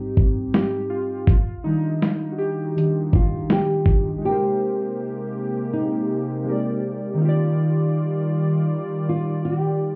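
A warbling, detuned synth keys part built from triangle and sawtooth tones sits up front in this cosy, nostalgic lo-fi hip hop excerpt, its fast attack and decaying notes softened by chorus, a low-pass filter and a filter sweep. A dusty, sampler-style drum kit enters almost at once with a thumpy kick, a medium-tuned snare and hi-hat, sounding gritty, compressed and overdriven, and it drops out at 4.1 seconds. A small, dark nylon-string guitar, fingerpicked and filtered, carries a narrow melody from 3.2 seconds. A smooth analog pad of detuned sawtooth chords with a soft attack and chorus arrives at 4.2 seconds, as the harmony moves from major seventh chords to richer ninth chords. The mix has a lazy swing and a muffled, heard-through-a-wall quality, with a short, wet club-like reverb around it.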